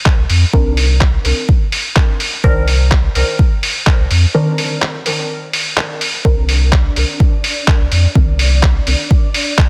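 The recording is dense and heavily limited, set in a light digital ambience. This nocturnal, hypnotic dub techno excerpt moves at 126 BPM in a straight 4/4, in C minor and tuned slightly low to A4 = 437 Hz. Up front, a layered, deep electronic kick pairs with a muffled, pitched-down, tape-tinged sampler-style kit of handclaps and hi-hat, both in a small-room reverb. Beneath them, a clean, smooth sine sub bass moves between C2 and F2, pumping from sidechain compression. Above, a muted sawtooth chord stab, detuned and shaped by a filter pluck and a moving notch, decays through phaser and dub echo, and a break arrives at 4.3 seconds. At 6.2 seconds, as the harmony settles on Csus2, a resonant, bubbling texture of random filter steps enters softly with chorus and its own reverb, lingering on a long release.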